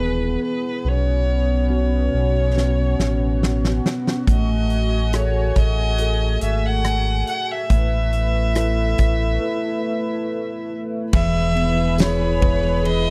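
A hopeful, tender pop ballad fragment in a straight, unhurried 4/4, built on a dry, close 1970s-style studio sound. A smooth, distant solo violin carries the melody with warm vibrato over a mellow tine electric piano heard through its built-in speakers, while a shimmering, retro pulse-width pad, detuned and chorused, holds soft sustained chords beneath. A deep sine sub bass with an added octave sits up front, and at 2.6 seconds a huge arena drum kit enters with a fill, its fat snare and punchy kick ringing in a big natural room. The drums drop into a break at 9.4 seconds before the music lifts at 11.1 seconds, where an intimate studio violin section adds a second line and a very quiet fingerpicked steel-string acoustic guitar plays arpeggios. A brief jingle of vintage tambourine brightens the final moments as the harmony returns home to E.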